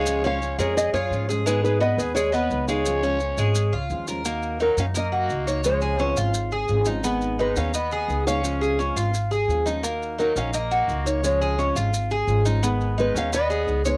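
Latin Cuban son and guajira at a brisk 172 BPM in 4/4, warm and nostalgic, with a fingerpicked nylon-string guitar carrying the melody while a raspy, growling trumpet adds a second line with light vibrato, the guitars, trumpet and tres heard through a cassette-tape haze within a moderate booth ambience. A metallic Cuban tres picks arpeggios up front on its doubled strings, a dark, old-stringed steel-string acoustic guitar is fingerpicked underneath, and a woody pizzicato upright bass sits forward in the mix. Grainy maracas enter at 0.1 seconds, and the harmony moves between Db, Abm and Ebm as the cut passage shifts into a new section at 4.2 seconds.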